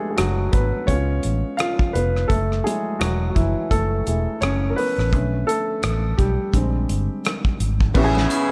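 A relaxed 85 BPM groove in 4/4 with a gentle sixteenth-note swing drives this romantic, lush 1970s-style soul excerpt, built on a grand piano with short sustain carrying the chords from G#m7b5 through C#7, F#m7, Bm7 and Bb13. A dark, rolled-off studio drum kit with a tight kick, medium-tuned snare, rim click, hi-hat and crash cymbal joins at 0.2 seconds beside a round, punchy, foam-muted fingered electric bass, all sitting up front in a small room. At 7.9 seconds a distant, roomy horn section with light vibrato adds warm stabs, and a shimmering triangle glints softly in the background as the harmony lands on Amaj9.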